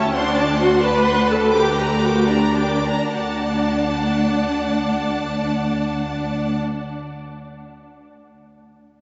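Classical string music in D major, this brief passage cut from a longer piece has a spirited, cheerful mood, moving in 6/8 with a rubato feel at roughly 67-91 BPM, counted in dotted quarters, and slowing down over its first 3.1 seconds. A bright, intense violin section carries the melody high up between A5 and D6, its vibrato close and lush, while a second violin section adds a warm, expressive line with a gentle attack. Beneath them, a rich chamber viola section plays an even, smooth accompaniment that sits up front, and a cello section anchors the bass on D2 with a close, full tone. The harmony moves from D7 through Gm/D before settling on D at 3.1 seconds, where the second section begins. All four sections play throughout, bathed in a wet cathedral reverb with a long five-second decay that lends the ensemble a soft glow.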